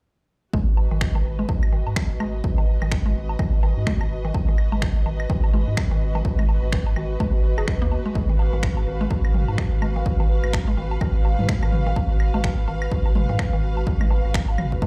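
Sparse and clinical, this minimal techno passage at 126 BPM in G# dorian swings its 16ths at 59% over a punchy analog kick and a deep, mellow bass that pumps with sidechain, while a woody, nasal mallet-like pluck riff with chorus and delay sits in the background beside a dark bowed string section with light vibrato, overdriven woodblock, claves and toms with tape echo enter at 0.8 seconds, and electronic finger snaps join at 1.0 seconds, all resting on a G# minor chord in what sounds like a big sound system in a bare room.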